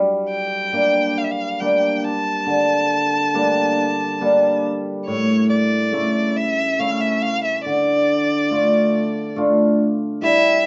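A slow, straight 3/4 at 70 BPM carries this festive yet bittersweet klezmer excerpt in D harmonic minor, moving from G minor to A and then D minor. A shimmering, mellow hammered cimbalom sits up front as accompaniment from the start. A single bowed violin carries the melody from 0.3 seconds with rich vibrato, soft attacks and expressive portamento. A distant, roomy clarinet in classical style slips in on a brief second line at 10.2 seconds, all within a small room's moderate reverb and a dark, warm production.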